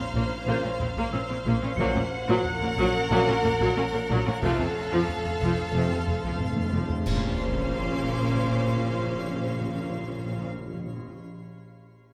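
This tense, uneasy suspense cue, cut from a longer cinematic score at 91 BPM in Bb Hungarian minor, opens on a lush orchestral string bed: a rich, distant violin melody over a smooth second violin line, a high violin texture, focused violas and double basses, and smooth cellos, joined by a twinkling granular shimmer, an eerie metallic drone and a delicate, bell-like celesta that drops out at 4.5 seconds. Heavy taiko drums sound from a small room while very quiet, mellow horns and trombones hold sustained chords, and articulate hard-mallet timpani enter at 1.8 seconds before playing a fill. At 7.1 seconds a band accent lands with bright clash cymbals, concert bass drum and a huge sub drop impact, set in moderate scoring-stage reverb.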